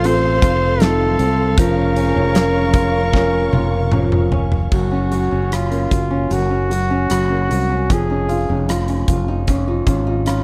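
Pop ballad excerpt at 76 BPM in Bb harmonic minor, melancholic and longing, led by an up-front flugelhorn melody with vibrato and scooped notes that carries until 8.7 seconds. Beneath it, a dark, distant French horn section and a lush, bowed string section with portamento sit in the first part only, while a smooth vintage grand piano, fingerpicked flamenco guitar arpeggios with finger squeak in the background, and a growly, punchy fretless electric bass run throughout. A huge arena drum kit with bright cymbals, a fat snare and a pumping room plays a fill from 3.1 to 4.7 seconds, leading into a second section over largely dry sound.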